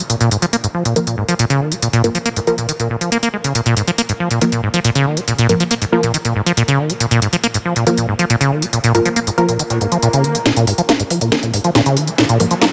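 Driving peak-time techno at 139 BPM in Bb minor, this hypnotic, relentless passage rides an up-front, squelchy, resonant acid saw bass riff with dub echo and an overdriven electronic drum kit with cracking snare and smooth hats, while muted, detuned dub chord stabs with chorus and a filter sweep sit in the background from 1.0 s, and a very quiet downlifter, swell and riser effect appears briefly at the start and returns at 9.8 s ahead of a drum fill and build-up from 10.5 s.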